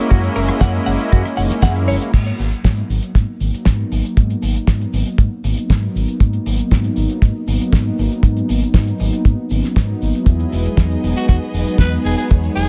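A tight, up-front acoustic kick drives this nu-disco excerpt at 118 BPM in G# minor, its dry, rolled-off thump anchoring a cosmic, sensual groove in a straight 4/4. A round, dark fingered electric bass pumps beneath it, while a damped 70s drum kit with a fat snare, hi-hat, rim click, shaker and crash cymbal sits polished and airy in the mix. A smooth, detuned sawtooth analog pad with a soft attack carries the chords from F#7 to G#m7 to Emaj7, treated with chorus, delay and sidechain pumping, and a filter sweep runs across it once the opening drop ends. A bright, twangy clean electric guitar picks a brief riff in the background from 0.1 to 1.9 seconds, and a focused, bowed violin section adds vibrato-laden sustained chords at the start, returning at 10.3 seconds. At 11.2 seconds a raspy, gritty tenor saxophone steps forward with a punchy pop-style solo line touched by delay, all captured in a nearly reverb-free space.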